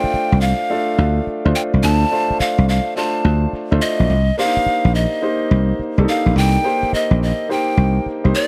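A swung sixteenth-note groove at 106 BPM in 4/4 drives this short, punchy new jack swing cut, taken from a longer R&B piece in C dorian and tuned to A4 = 444 Hz. The thumbed slap bass sits loudest in the mix, foam-muted and direct, holding a low register from Bb1 to D2 and dropping out at 8.3 seconds, just before the others. A clear concert grand piano supplies accompaniment in the middle range, intimate and polished, with its action noise audible under the chords as the harmony moves from Dm7 to Cm7 at 4.1 seconds. On top, a bamboo pan flute carries the melody between D5 and A5 with a breathy, straight tone, a crisp chiff on each attack and a touch of tape echo. The close, dry 1970s-style studio sound keeps every part up front and gives the whole passage a confident feel.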